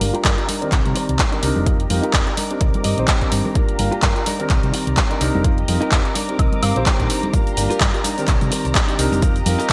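Filtered disco house at 127 BPM in C minor with a swung sixteenth feel, this funky, nostalgic excerpt rides a filter sweep across its full length over Cm9, F9sus4 and Gm7 chords. A punchy, tape-warm electronic kick and an up-front analog drum machine of hi-hat, handclaps, cabasa and woodblock, with gated reverb, drive a round, amped hollow-body bass with tube saturation. A mellow, phased grand piano with audible action noise carries the accompaniment, while ringing maracas and congas, soft-attack sul tasto violins, and a bright, clean direct-recorded guitar riff that adds fills at 2.6 and 5.9 seconds sit in the background, all pumping under sidechain compression in a bright 1980s-style digital sound.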